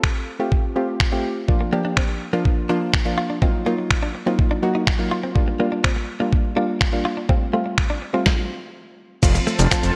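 A gritty, tape-warm soul-sampler drum kit with a thumpy kick, finger snaps, shaker and gated reverb drives this euphoric, carefree dance-pop excerpt, backed by a soft, round pluck pumping against the beat under chorus, while a clean, direct-recorded electric guitar riff bathed in lush chorus joins at 1.6 seconds, and after a stop from 8.3 seconds, a fat, detuned analog bass and a supersaw pad arrive together at 9.2 seconds, all in a bright 1980s-style digital sound with a lush hall reverb.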